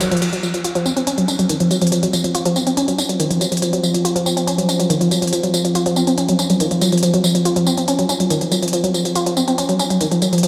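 A woody, wave-folded pluck riff with chorus and dub echo sits up front over a layered electronic techno kit of crash, smooth hi-hat, ride and tambourine, joined at 0.2 seconds by a mellow, evolving sawtooth-and-pulse analog drone on an F5 chord, all driving industrial peak-time techno at 141 BPM, cut from a longer piece and bathed in a huge ambient reverb that sounds like a big sound system echoing through a bare stone room.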